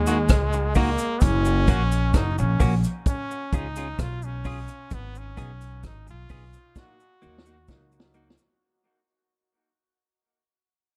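A brilliant, forceful trombone opens this short dub reggae fragment with vibrato and scooped notes, soaked in dub echo, over a woody pizzicato upright bass that sits up front at a slow 65 BPM. A clean, picked electric guitar, also echoed, joins with a vintage kit in a small room, its punchy kick and high-tuned snare rolled-off on top, while a cabasa rattles faintly in the background through a D#m, F#, C#, G#m progression. The hazy, spacious mood carries a dark production throughout a fade-out, and from 6.8 seconds a drum fill arrives with a tight trombone section's second line buried deep beneath the lead.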